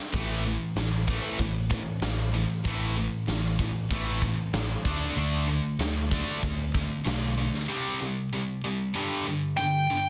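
A scooped, high-gain guitar riff drives this menacing, heavy hard rock fragment in A minor at 95 BPM, joined by a bright overdriven rhythm guitar through A5, D5, C5 and G5 chords, while a growly picked bass and a huge arena drum kit with a big-room snare and hard-hitting kick pound along until about 7.6 seconds, leaving the guitars to carry the riff before a smooth overdriven lead guitar with slapback echo steps up front on a single high G at 9.6 seconds, all in a dense, heavily limited modern mix.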